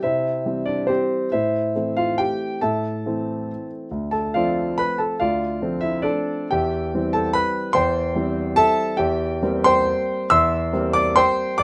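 A touch of light reverb surrounds a solo concert grand piano that sits up front, its tone warm with a deep bass and short sustain. This is a sparkling, playful classical piano waltz in 3/4 and C major, tuned to A4 = 438 Hz. The tempo moves freely with rubato, ranging between 121 and 152 BPM. Across its range from D2 to E6, the piano moves through C, Am, Dm7, C/E and C7/E. The clip, cut from a longer piece, runs from 0.0 to 11.6 seconds as a single section, with the piano playing alone throughout.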